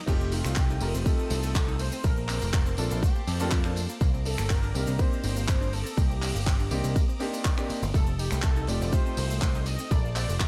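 A straight 4/4 groove at 122 BPM drives this sensual, groovy nu-disco passage, cut from a longer piece. A punchy, layered electronic kick sits up front with a dry, damped 70s drum kit of hi-hat, handclaps, finger snaps, tambourine and crash cymbal, while a compressed, saturated cabasa stays in the background. The overdriven picked electric bass is dark and round, played direct and up front between F1 and F2. Over chords of F9, Bbmaj9 and Cm9, a grand piano adds intimate accompaniment with audible action noise, short sustain and slapback echo, dropping out at 9.9 seconds. A thick, bold unison lead carries the melody with a bright sawtooth tone, vibrato, lush chorus and analog delay, while a detuned, filter-plucked analog synth plays background arpeggios with chorus, analog delay and sidechain pumping. Behind them, a vintage string machine holds full sustained chords with a slow attack, ensemble chorus and the same pumping, all set in a small room ambience.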